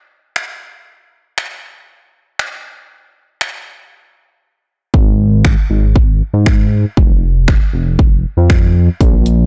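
Dance-pop at 118 BPM in F minor, energetic and confident, this clip from a longer piece opens with an up-front electronic pop drum kit of finger snaps, bright hi-hat and a punchy kick with soft clipping on the snare, drops the drums briefly at 4.4 seconds, then brings in a glossy, retro chorused synth bass at 4.9 seconds whose pulse-wave and sawtooth tones, filter sweep and sidechain pumping sit up front from F1 to Ab2, all within a blown-out, overdriven recording and digital ambience.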